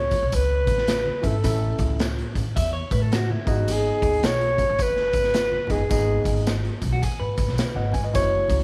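A dark alto saxophone leads this joyful, danceable excerpt of uptempo 1960s-style soul at 107 BPM with a swung feel, its vibrato-laden subtone melody carrying a slapback echo over a barky, overdriven electric piano, a woody, thumpy pizzicato upright bass and a punchy, gritty garage drum kit in a pumping stone room, with ringing low congas and a jingly tambourine tucked behind, while a twangy, slightly broken-up electric guitar riff cuts in at 2.6 and 6.9 seconds as the chords move from A to G#m.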